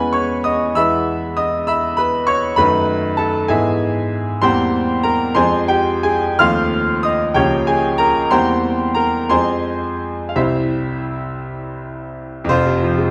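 A romantic classical character piece for solo piano, this short excerpt moves in 6/8 at roughly 56-67 BPM in the dotted quarter, shaped by a flexible rubato that gives it a bittersweet, stormy mood. A bright grand piano carries everything from the first second to 13.1 s, spanning F1 to F6, its tone brilliant and smooth with a vintage cast and long sustain, placed up front. The music opens in C# minor before turning toward F minor at 4.4 s, the harmony pressing through diminished and dominant seventh colors before settling onto F minor near 12.5 s. Tuned slightly low at A4 = 436 Hz, the instrument sits in a wet recital hall whose reverb lingers around 1.7 seconds, lending the passage a resonant, enveloping space. Cut from a longer piece, the fragment feels like a single impassioned breath of a larger drama.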